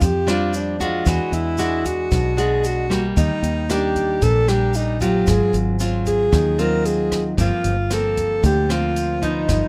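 A mellow alto saxophone carries a sunny, romantic bossa nova melody up front from the start, its subtone and vibrato giving a soft-attack jazz voice, alongside classical-style fingerpicked nylon-string guitar with audible finger squeak. At 114 BPM in a straight 4/4, a foam-muted, punchy fingered electric bass sits beneath a natural-sounding cocktail drum kit of hi-hat, kick drum and rim click heard in a tight booth, while a grainy tube shaker lingers distant in the background. Light reverb surrounds this short cut from a longer piece as the harmony moves from Bb69 through E9, Ebmaj7 and Ab6 to Gm11.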